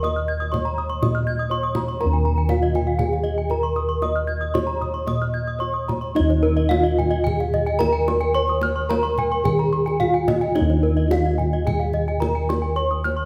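Brilliant and shimmering, this Balinese gamelan excerpt sets a mellow, airy bronze metallophone melody struck with padded disc mallets over round, bright bossed gongs that sit up front in the bass, with a tight kendang played with hard hands. Two more metallophones weave arpeggios above, one played with a horn mallet and the other, entering at 0.2 seconds, with a wooden mallet; the paired tuning of the three metallophones gives a beating, ringing sparkle. A recital-hall reverb surrounds the ensemble, and the music moves into a new section at 6.2 seconds.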